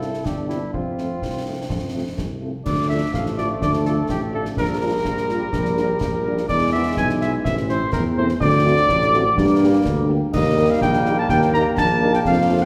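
Military-style march for wind band in 2/4 at 125 BPM, festive and spirited, cut from a longer piece: an up-front, mellow cornet carries the melody with light vibrato over a roomy tuba bass, a very quiet but punchy French horn section, and concert snare, bass drum and dark clash cymbals. A distant euphonium adds a second line only until 2.4 s, and a tight trombone section with light vibrato enters with sustained chords from 2.6 s. The harmony moves from C and F into Dm, Gm7/Bb, E, Am and D7 before closing on Eb, all in a wet, hall-like reverb.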